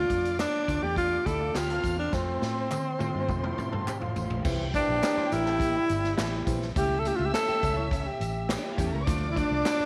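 A straight 4/4 groove at 104 BPM drives this joyful, uptempo 1960s-style soul excerpt in C mixolydian, with a punchy, roomy big-band drum kit, a round, foam-muted fingered electric bass with tube saturation, and tambourine and handclaps tucked in the background. A breathy, intimate tenor saxophone carries the melody up front with vibrato and a soft attack. Beneath it sit a lush, woody string section with slapback echo, a brilliant grand piano, and a lo-fi, slightly broken-up electric guitar riff entering at 1.3 seconds, while a drum fill runs from 2.1 to 4.4 seconds over chords moving from Dm through F and C to A7/C#.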